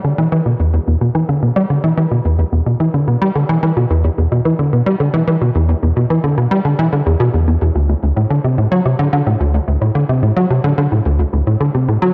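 A wet spring reverb with a 2.0-second decay hangs around a single sequencer bass, and the whole thing carries the haze of a home cassette recording. This is a mysterious, hypnotic ambient fragment in E minor, moving at 109 BPM in a straight 4/4, cut from a longer piece and lasting 12.1 seconds. The bass plays solo throughout, ranging from D2 to G3, sitting up front with a tight, punchy, driving, saturated character. Its tone blends sawtooth and square waves with the metallic edge of ring modulation, shaped by a filter pluck with a fast attack that decays into a mellow tail. Analog chorus, cassette tape coloring and tape echo thicken the line, lending it a worn, smeared glow.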